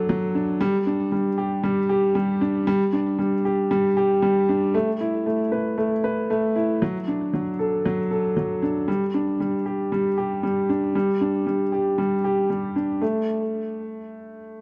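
A woody, boxy upright piano plays alone and up front, its action noise audible and its long sustain carried by delay and a moderate echo-chamber reverb, in this hypnotic, intimate electronica fragment at 116 BPM that opens on a drop from 0.0 to 4.7 seconds and is cut from a longer piece.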